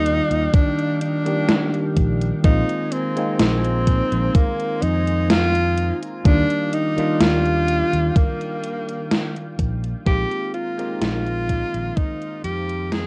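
A clear, close-miked tenor saxophone with tape echo and vibrato sings a dreamy, faded vaporwave melody over bell-like tine electric piano, a lush, warbling pad of detuned sawtooth and square waves in the background, and an amped fingered electric bass up front, moving between Ebmaj9 and Bb9sus4, as an overdriven gated 80s drum machine with hi-hat and a gated-reverb snare and a thumpy electronic kick join within the first second, heard through a rough cassette home-demo mix that fades out from 7.5 seconds in this cut from a longer piece.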